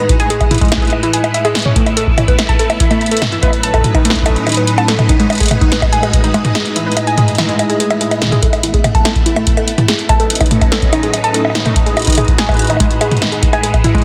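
A dense, heavily limited modern master with light reverb frames this short, glitchy and playful IDM fragment, cut from a longer piece and moving at 144 BPM in a straight 4/4 in A lydian. A deep, up-front electronic kick anchors the groove alongside an analog electro drum machine whose punchy snare, metallic hats, bongos and toms carry a trail of tape echo. Beneath them, a silky vintage string machine holds slow-attack sustained chords with long release, its mellow tone colored by phaser, ensemble chorus and a moving notch. Over the top, a warbling, lo-fi, detuned pluck with a sub octave and a dark, filter-swept edge spins out fast-attack, decaying arpeggios through chorus and digital delay. The harmony cycles through Emaj7/A, Asus2, Badd9/A and G#m7, and the kick drops out from 6.8 to 8.4 seconds before returning.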